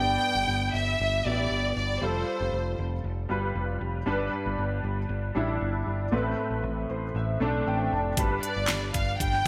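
A lush, vibrato-rich violin section carries the melody of this hopeful piano-driven pop excerpt at 117 BPM in G mixolydian, over an intimate grand piano with audible action noise and ensemble chorus and a round, overdriven picked electric bass. The violins fall silent after 2.8 seconds while the piano moves through G, Fadd9 and Amadd9 chords and plays a fill from 6.6 seconds. At 8.2 seconds a layered electronic pop drum kit with a knocking kick, fat snare, handclaps and crisp hats arrives, and the violins return at 8.4 seconds, all within a bright 1980s-style digital production bathed in a moderate hall reverb.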